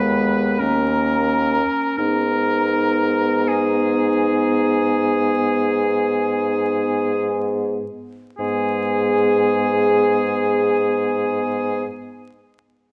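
Dark and crackling like an old record, this recording sits in the wet bloom of a recital hall with a reverb tail of about 1.7 seconds. It is a slow, yearning and melancholic romantic movement for wind quintet in G# minor, moving at 34 to 46 BPM in 4/4 with a flexible, rubato feel, cut from a longer piece. The bassoon is the most present voice, warm and up front with vibrato as it carries the bass, while a distant, roomy clarinet and a smooth-topped French horn with light vibrato fill in the accompaniment. Above them, a clear oboe with light vibrato sings the second line. The pure, hollow concert flute carries the melody from the background, softly attacked and lifted in the highs. Within the first two seconds the harmony moves from G#m/D# through D#5 back to G#m, and the music slows through its opening passage until 8.4 seconds, then moves into a new section.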